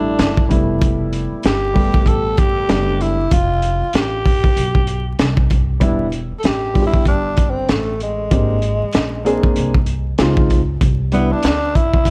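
A growling tenor saxophone, a dark concert grand piano and a pizzicato upright bass open this cool, warm jazz-hop excerpt together, with a crunchy breakbeat kit joining at 0.2 seconds at 96 BPM in a swung 4/4. The drums sit up front with a tight kick, a high-tuned snare and hi-hat, all saturated with vintage 12-bit sampler grit and a rolled-off top. Beneath them the bass gives a woody, thumpy low end from gut strings, while the piano lays down intimate, vintage-sounding chords such as Fmaj9#11 and Abmaj9#11, its action noise audible and its lower register deep. The breathy, raspy saxophone plays with subtone, vibrato and scooped notes, and from 5.8 seconds it takes a solo over the Em7, Dbmaj9 and Cmaj9 changes. The piano drops out at 11.4 seconds, and the whole piece is wrapped in small-room ambience and vinyl crackle for a dark, warm production.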